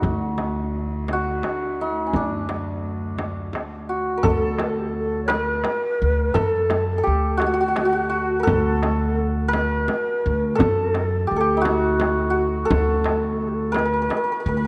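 A ringing, hammered santur opens this festive, stately Persian modal ensemble piece, carrying the melody up front in 6/8 over a woody, thumpy pizzicato upright bass. Beneath them, a clear, floating bowed cello section holds a pure drone until it stops at 4.3 seconds. A close, dry frame drum and a deep, vintage-toned tombak played with soft hands sit in the background. At 3.9 seconds an airy, end-blown ney enters with a second line, its mellow, vibrato-laden reed-cane tone carrying a slapback echo from its place further back in the mix. A moderate concert hall reverb gives the ensemble a spacious setting, and the passage is cut from a longer piece.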